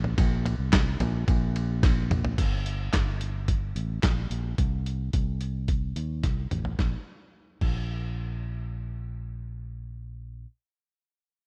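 A dry, rough home-demo sound frames this hopeful, uplifting snippet of piano-driven pop at 109 BPM in a straight 4/4, cut from a longer piece. Up front, a muffled, tape-tinged sampler-style kit, compressed and pitched down, lays down a thumpy kick, medium-tuned snare, hi-hat, handclaps, ride, crash and toms, with fills at 1.8 and 6.2 seconds before it drops out at 7.8 seconds. A punchy, direct-and-amped fingered electric bass, also up front, holds the low end from G1 to Eb2.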